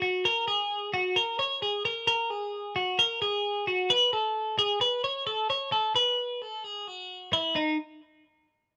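In a straight 4/4 at 131 BPM, this breezy, nostalgic indie pop fragment, cut from a longer piece and tuned to A4 = 437 Hz, features a solo twelve-string electric guitar, picked and placed up front with a bright, twangy, clean, compressed tone between D#4 and C#5, playing from 0.0 to 7.8 s before a new section arrives at 7.6 s, all set in moderate studio reverb within a rough home demo mix.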